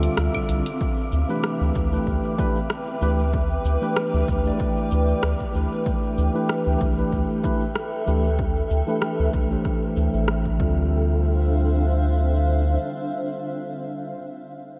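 A lightly swung 4/4 groove from a punchy electronic kick and a filtered deep house kit of claves, hi-hat, rim click and shaker drives this hypnotic, mystical organic downtempo cut, with both the drums and the clean, up-front tine electric piano under a filter sweep until about 10.9 seconds. A round, dark analog bass holds the low end while a cloudy, detuned granular pad sustains Dm9, Em7/D and Am7 chords, the pad, piano and bass all pumping to the sidechain. The drums drop out near 10.7 seconds, leaving the keys, pad and bass to drift in a dreamy mix soaked in huge ambient reverb.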